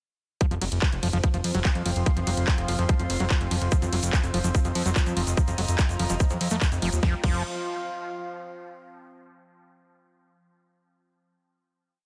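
An overdriven, up-front four-on-the-floor kick drives this short, alien psychedelic trance piece, joined by a big-room drum kit with a huge snare, claps, hats, ride and crash, a fat, saturated analog bass rolling in sixteenths, a squelchy, screaming distorted acid line with dub echo and sidechain pumping, a warbly lo-fi pad of slowly shifting chords, a very quiet drone with moving overtones and phaser, and a grainy hand-played shaker that enters at 3.7 s, before everything but the pad drops away to leave a final chord from 7.0 s.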